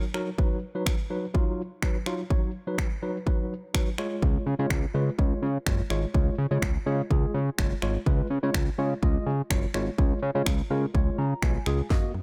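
A straight 125 BPM dance-pop groove in 4/4 comes from a punchy, up-front house drum kit of kick, cracking snare and finger snaps, under a worn, slightly out-of-tune tine electric piano that pumps with the sidechain and plays a fill near 10.9 seconds, while a fat, detuned sawtooth bass enters at 4.2 seconds, and a brief woody synth pluck, a drum fill and a barely audible riser close this euphoric, summery cut from a longer piece in a dry mix.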